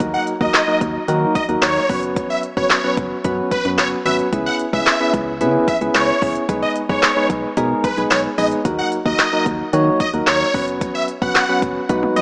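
A driving, bittersweet dance-pop passage cut from a longer piece moves in a straight 4/4 over a cycle of D#m, F#sus4, C#m7 and G#m/B chords. A deep house drum kit runs throughout, its layered electronic sound built on a deep kick, a woody snare, smooth hats, handclaps and toms, with a drum fill arriving at 11.9 seconds. Soft, round electric-piano-like synth keys sit up front with a mellow chorus shimmer and sidechain pumping, while an organ-like FM bass adds a hollow, percussive, dark low end that pumps along with them. Huge, lush supersaw chords carry the melody from 0.1 seconds, their detuned sawtooth body treated with phaser, tape echo and the same pumping. The whole mix has light reverb and a small-speaker character.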